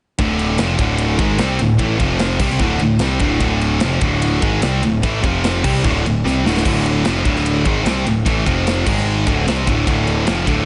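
A straight 4/4 pulse at 149 BPM drives this heavy, relentless heavy metal excerpt in D minor, cut from a longer piece and running from 0.2 to 10.7 seconds as one continuous section. Two bright, high-gain electric guitars carry the riff together, both picked, distorted and placed up front, moving between D minor and F5 power chords with a brief G#5 before settling back on D minor near the end. Beneath them, a picked electric bass with fuzzy overdrive adds a punchy, direct-and-amped low end. A tight metal drum kit with a medium-tuned snare, tight kick, ride and bright crash cymbals keeps the acoustic kit polished and airy, breaking into a short fill from 6.2 to 6.7 seconds. The small room ambience keeps the sound close, with the top end rolled off above 10.3 kHz.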